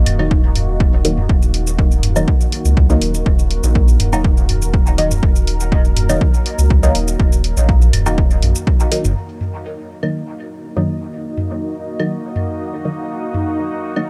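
Opening on a detuned, cavernous sawtooth pad, nasal, resonant filtered chord stabs trailing dub echo and a round, sine-like analog bass in Eb minor, this deep, dark dub techno excerpt at 122 BPM soon adds a punchy, up-front electronic kick, overdriven hi-hat and shaker, and layered electronic toms and claves, all in a dry, dark mix with pad, stabs, bass and percussion pumping to the sidechain, until the kick, bass and hats drop out around 9.1 seconds and, from 9.2 seconds, a filter sweeps across the stabs while a very quiet, bubbling stepped-filter texture enters alongside the lingering pad and percussion.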